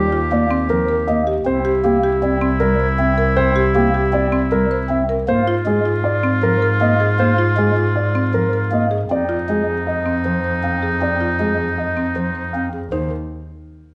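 Heard in a moderate recital hall with a soft top end, this propulsive, hypnotic minimalist classical excerpt moves at 157 BPM in a straight 5/4. A dark, mellow grand piano with audible action noise carries the melody, while a clear oboe with light vibrato sings a second line until 12.7 seconds. A hollow stopped-flute chamber organ with chiff holds the accompaniment, and a buzzing, woody marimba spins arpeggios from 0.1 seconds; underneath, a rich bowed double bass sits up front as the harmony moves from Eb69 through C7, Ab69 and Fm7, then falls away to an unharmonized moment at 12.9 seconds.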